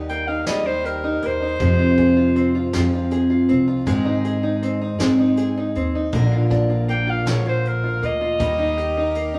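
Picked steel-string acoustic guitar with a faint finger squeak, plunky fingerpicked banjo arpeggios and a woody pizzicato upright bass open this peaceful acoustic folk passage in Eb major, a slow 6/8 at 53 BPM, with brushed drums adding punchy kick, snare and hi-hat. A bright, classical-style clarinet carries the melody up front, resting from 2.7 to 6.9 seconds, as the harmony moves through Eb, Fm, Ab and Bb before returning to Eb. A reedy accordion enters on sustained chords at 8.4 seconds, and the whole band sounds like it is playing live in a stone room with a wet reverb.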